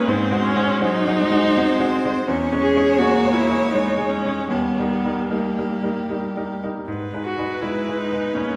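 Yearning and melancholic, this slow romantic movement for piano quartet sways in 3/4 at 74-85 BPM with a rubato feel, cut from a longer piece and tuned to A4 = 439 Hz. A bowed violin carries the melody with smooth, even vibrato, while a cello traces a second line in the same lush tone, and a focused viola and a brilliant, polished grand piano with short sustain sit up front as accompaniment across all 8.6 seconds. The harmony moves from G#7 through C#m/E and D# to G#m, and the ensemble is heard from further back in a reverberant scoring stage with a 1.8 s decay.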